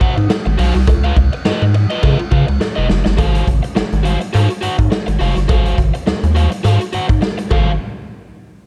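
A dark small-room sound frames this gritty, playful funk fragment at 104 BPM with a swung sixteenth feel in Ab mixolydian, where a rubbery, wave-folded square bass with a resonant filter pluck sits up front beside a saturated garage drum kit with a punchy kick, a crunchy overdriven electric guitar plays picked accompaniment, a metallic cowbell sits in the background from 0.3 seconds, and a drum fill at 2.6 seconds leads into a new section at 3.2 seconds.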